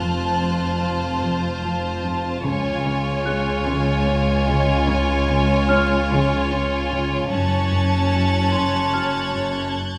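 A clear, up-front violin section carries the second line in this eerie, uneasy fragment of a suspense film score, its bowed, vibrato-laden tone smooth and even over the middle register. Above it, another violin section holds the melody high in a lush, warm voice, while a third violin group adds a clear, smooth texture at the very top, present from the start until 2.0 seconds and returning at 7.3 seconds. Beneath, one cello section plays a low riff set back in the mix, a second cello section plays a focused bass line, and a rich, bowed double bass section anchors the lowest register. A soft celesta with felt hammers adds bell-like, airy texture in the background, lending a sweet, delicate glint to the strings. The music moves at 74 BPM in a slow 3/4, shifting from F to Db and then to a shadowed Gbm, all heard through a wet, resonant hall reverb that gives the ensemble a spacious, church-like bloom.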